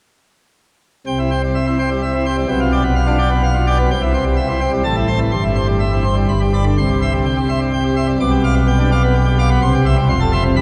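In a straight 3/4 at 127 BPM, this jubilant, majestic organ toccata in C major unfolds as a short passage cut from a longer piece, tuned to A4 = 443 Hz. A solo pipe organ on full plenum plays from 1.1 to 10.6 s, spanning F1 to D6 with brilliant mixtures, baroque voicing and audible chiff. The organ sits up front, yet a cathedral reverb with a 4.1 s decay surrounds it and lends the sound the sense of being heard from further back in the room. The harmony circles firmly around C, moving through G7/B, A minor, C/G and G before settling on C again. It turns to Fmaj7 at 10.1 s, just before the passage breaks off.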